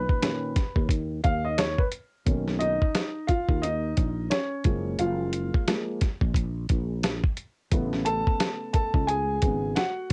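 Jazz-hop with a relaxed, warm mood, this short excerpt rests on a dusty, sampler-style drum kit with a thumpy kick, medium-tuned snare and hi-hat, compressed and gritty, under a swung sixteenth-note feel. A dark, mellow baby grand piano carries a solo throughout, with a cassette-tape coloring, moving through Bmaj9, F#maj9 and Amaj9 chords. A bright, growly fretless electric bass with analog chorus sustains beneath it. The sound is dry and up front, like a home cassette recording.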